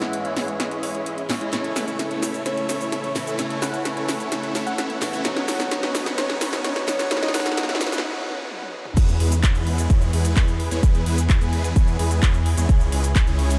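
A soft, round FM synth lead and a boxy picked swing-style acoustic guitar sit in the background over a lush detuned pad, huge phased supersaw chords and a big-room kit of punchy snare, metallic hats, crash, claps, shaker and toms, building through drum fills, a filter sweep on the supersaws and a very quiet riser from 4.9 seconds into a brief break, before the euphoric, triumphant festival progressive house drop at 9.0 seconds brings in a thick, chorused saw bass and an up-front layered electronic kick, the whole dreamy mix soaked in long ambient reverb.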